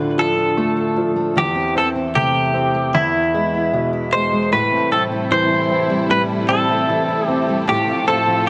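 This heartbroken, longing pop ballad excerpt moves at an unhurried pace in a straight four-beat feel, as a brilliant, natural grand piano sits up front with a low-to-middle accompaniment. A fingerpicked steel-string acoustic guitar plays arpeggios alongside it, its concert tone touched with delay. From 0.2 s, a clean, direct-recorded electric guitar carries the twangy, compressed melody, its picked notes shimmering through a lush chorus. At 4.5 s, a distant, warm studio string section enters with sustained bowed chords, its expressive vibrato and portamento adding ensemble depth. The harmony moves through Dm, Am/E, E, Am7 and F/A, and a moderate plate reverb gives the 8.5-second passage a spacious sheen.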